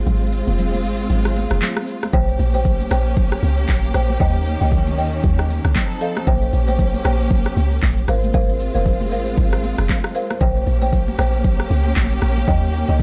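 A round, percussive log drum bass sits up front in this soulful, late-night amapiano excerpt in Bb dorian at 116 BPM with a swung 16th feel, joined by an electronic drum kit with a deep kick, crisp hats, handclaps, rim clicks and shaker, bright background congas, and lush, distant bowed strings that pump under sidechain, while woody marimba stabs with delay enter at 2.1 seconds over chords moving through Bbm69, Eb7, F7 and Ab69 in a dark, warm small-room mix.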